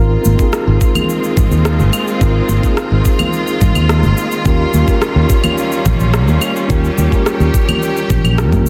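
A mellow tine electric piano, played clean through its built-in speakers with a touch of delay, opens this sunny chillout excerpt alongside a clear, focused string section holding bowed chords with vibrato and a round, dark fretless bass sitting up front. At a relaxed 107 BPM in straight 4/4 and Ab major, the harmony rests on Ab6 before moving to Eb9 at 4.5 seconds. An electronic layer of shaker, rim click and claves enters at 0.2 seconds, overdriven and re-recorded in a large room for a gritty, roomy edge. Bright, high-tuned congas played with soft hands sit in the background, and a knocking electronic kick joins at 0.4 seconds to anchor the groove. Light reverb and digital ambience surround the parts, and the dense, heavily limited modern master keeps this short cut from a longer piece full and present.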